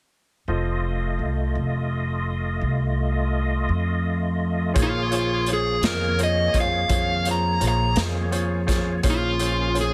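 A soulful, mournful slow blues in 12/8 opens over an F7 chord with a bright, brilliant upright piano whose action noise is audible, a reedy tonewheel organ holding sustained chords through a slow rotary speaker with chorus vibrato and key click, and a woody pizzicato upright bass up front. At 4.8 seconds the harmony moves to Bbm7 as a dark, overdriven lead guitar takes the melody and a raw garage drum kit enters, its punchy kick, medium-tuned snare and hi-hat sounding saturated and gritty in a small, pumping room. The dry, heavily compressed mix has a radio-like quality, and the passage is cut from a longer piece.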